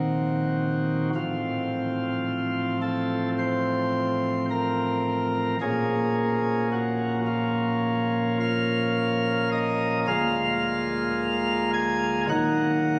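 A chamber organ on its principal chorus carries this grave, dark classical chorale alone, its full, up-front voicing touched with chiff as it ranges from a deep D1 up to Ab5 in Bb minor at a slow 54 BPM in straight 4/4. The harmony moves from Cm7b5/Bb through F/A to Bbm at 5.6 seconds, then Bb7/D toward Ebm at 12.3 seconds. A phone recording in the room, compressed and bathed in a long cathedral reverb, gives this short fragment of a longer piece a cavernous halo.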